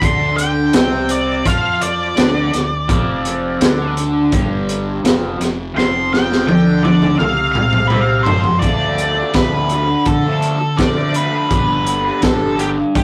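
Psychedelic rock with a dark, mysterious mood, moving at 84 BPM in a straight 4/4 in D dorian, cut from a longer piece. An octave-fuzz lead guitar carries the melody up front, its dark, distorted tone taking a solo from the start until 8.6 seconds, when the harmony shifts from Dm7 and F5 to Dm and G. Beneath it, a raw garage guitar plays a bright, overdriven, double-tracked riff colored by phaser, while a fingered electric bass adds a round, fuzzy low end. The acoustic breakbeat kit sits up front with a high-tuned snare, tight kick and toms, its saturated, gritty sound rolled off at the top, and it plays a fill from 5.8 to 8.6 seconds. The whole track has the rough feel of a rehearsal-room recording, with warm saturation and moderate reverb.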